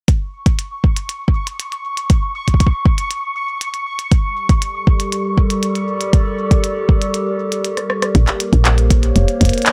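IDM at 119 BPM in a straight 4/4, intricate and eerie, this short fragment is cut from a longer piece and has a dry, gritty hardware sound with little reverb. A deep, up-front electronic kick anchors the groove alongside a glitchy kit of handclaps, clicky hi-hats and rim clicks. From 0.4 seconds a bubbling, resonant sawtooth texture sits high around Db6, its detuned tone stepping through random filter changes, treated with chorus and its own reverb. A nostalgic, lo-fi pad enters at 4.8 seconds, its warbling square and triangle tones detuned with a sub octave, holding dark, vintage Gmadd9 and then Bbmadd9 chords with a slow attack and long release. After a brief drum fill, a round, woody FM bass arrives at 8.1 seconds with a fast, decaying attack and tube-saturated grit, moving between F1 and Bb1 as the harmony shifts to Bbmadd9.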